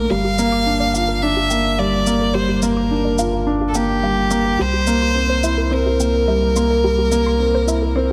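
A clear, smoothly bowed solo violin sings the melody up front with vibrato, set beside a dark, mellow concert grand piano whose short-sustained riff carries a delay in this luminous, tender piano-and-strings electronica cut from a longer piece. Beneath them a round analog bass with an evolving, ring-modulated tone holds the low end, while a very quiet, detuned pluck traces soft chorused arpeggios and an electronic shaker ticks from 0.4 to 7.8 seconds. The harmony moves from Gm7 to C7, all bathed in a moderate concert-hall reverb.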